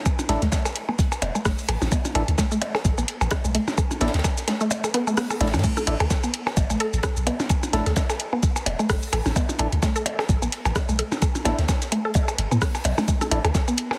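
Minimal techno with a hypnotic, quirky mood, this short cut from a longer piece rides a swung sixteenth-note groove in 4/4. An overdriven, knocking electronic kick sits up front beside a deep, punchy sine sub bass with a pitch-drop attack and sidechain pumping, and the kick drops out between 4.7 and 5.6 seconds. A booming analog drum machine supplies crash, metallic hi-hat, rim click and shaker with a tape-warm character, while a crisp acoustic fusion kit with a high-tuned snare, hi-hat and ride sits in the background of a small, pumping room, its cymbals, hats, snare and room all high-pass filtered. Percussion blips re-recorded in a large room carry tape echo, and a juicy, squelchy resonant blip pluck riff with chorus, dub echo and sidechain pumping plays while a filter sweep on a synth arpeggio runs throughout. A hollow, organ-like percussive stab drenched in lush chorus and tape echo adds mellow colour, and the whole mix has light reverb and a heavily compressed, radio-like sound.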